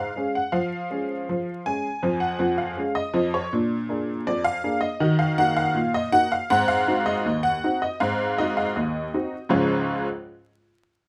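A detuned, jangly honky-tonk upright piano opens this ragtime excerpt at 0.0 seconds, playing alone in a lively, cheerful mood. It moves at 80 BPM in a straight 2/4, in D-flat major with tuning near A4 = 441 Hz, spanning from Db2 up to Ab5. The harmony travels from Db through Db/F, Bb7, Ebm and Ab7 before arriving back on Db at 9.5 seconds, where a new section begins. The bright, vintage piano sits up front in the mix, with light reverb and a layer of vinyl crackle that gives the recording an old-record patina. The piano stops at 10.1 seconds, as this short passage is cut from a longer piece.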